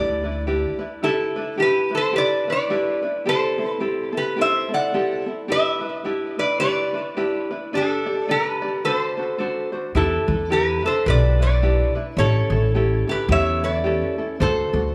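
A metallic, nasal metal-body resonator slide guitar, played with fingerpicks and carrying tape echo, sings the melody up front in this relaxed, sunny Hawaiian excerpt at 108 BPM in G major with a swung feel, over a light fingerpicked ukulele and a woody, thumpy pizzicato upright bass that sounds briefly at the start and returns at 9.9 s, all set in a moderate recital-hall reverb.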